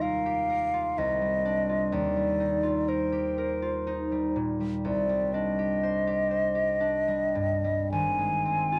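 A dark production with light reverb frames this pastoral, dreamy impressionist classical duo in Eb major, drifting in a rubato 3/4 at 52-64 BPM, where a close-miked silver concert flute with a pure, hollow, mellow tone and vibrato sings the tongued melody up front over a fingerpicked concert harp whose ringing accompaniment moves through lush chords such as Ebadd9, Cm11 and Eb69 before settling on Ab by 7.9 seconds.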